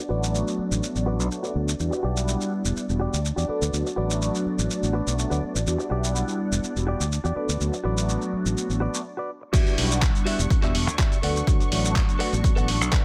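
Filtered disco house at 124 BPM, sensual and funky, alternating D6 and Em9 chords as a low-pass filter sweep runs through the first 9.5 seconds over sidechain-pumped dark bowed strings, a clean, bright direct guitar riff with 12-bit sampler grit, round, chorused and phased synth brass, and an up-front fingered electric bass, while a dusty, overdriven sampler-style kit of crash, handclaps, hi-hat and shaker pumps along until a short break at 9.1 seconds gives way to a drop at 9.5 seconds, where a punchy analog electronic kick enters, all in a dry mix.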